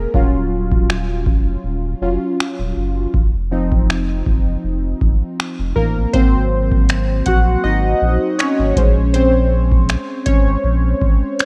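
A booming analog drum machine sits up front in this slow, sensual contemporary R&B excerpt, its deep kick, metallic hi-hat and finger snaps carrying a lightly swung 16th-note feel at 80 BPM in 4/4. Detuned sawtooth keys with a filter sweep, chorus and phaser take the solo across the whole clip, playing a round, decaying part over a longing progression in Eb dorian that runs from Ebm7 through F7(no3) and Ab7 to Bbm7. A deep, sine-like sub bass holds sustained low notes beneath them, stopping at 11.2 seconds. The opening 6.1 seconds form a break. The whole recording is wrapped in digital ambience and a worn, warbling cassette-tape character with a drifting pitch, giving the sound a hazy, nostalgic glow.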